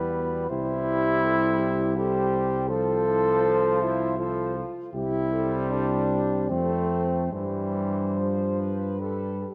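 Tender and serene, this short hymn-like classical passage for brass band moves in a flexible, rubato 3/4 at roughly 70-83 BPM in C major, and it is cut from a longer piece. A dusky flugelhorn carries the melody with a soft attack, while a shadowy French horn section sits distant and in the background, adding a second line with light vibrato. Up front, a mellow euphonium fills out the accompaniment with gentle vibrato, joined by a bright trombone whose vibrato shimmers further back in the blend. Beneath them, a dark tuba anchors the bass with a smooth-topped tone and soft attack. The harmony settles from an opening E minor into C, drifts through F over C and F, and comes to rest on G at 9.0 seconds, all within a moderate concert-hall reverb that gives the ensemble an unhurried, devotional glow.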